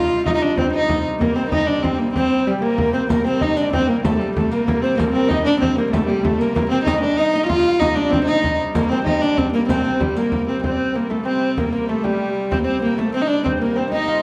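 A rich, close viola da gamba carries the melody up front with light vibrato and an airy, floating bow, over a nasal, reedy hurdy-gurdy drone in this mysterious, driving medieval dance in C dorian, moving at 127 BPM in a straight 6/8. A breathy, distant alto recorder with audible chiff and a delicate, fingerpicked lute with slapback echo add second lines, while a deep, saturated frame drum played with soft hands provides percussion and a riq's bright jingles join in the background from 3.1 to 10.4 seconds. The dark production sits in a wet recital hall, and the excerpt is cut from a longer piece.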